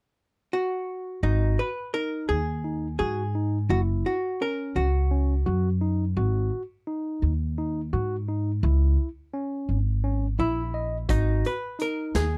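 Brooding and driving, this progressive instrumental cut from a longer piece moves in an uneven 7/8 at 170 BPM counted in eighths, settled in G# minor. A dark, clean archtop guitar, picked and up front, carries the melody from 0.5 s, drops out, and returns around 10.4 s. From 1.2 s a bright, barky tine electric piano with light overdrive spins arpeggios, while a woody pizzicato upright bass on steel strings anchors the low end, sitting prominently in the mix. A swinging big-band drum kit with a punchy kick, medium-tuned snare and hi-hat arrives only at 11.1 s, its natural big-room sound set against the otherwise close, dry 1970s-style studio recording. The harmony moves from G#5 to F#5, back to G#5, then to C#m before returning to G#5.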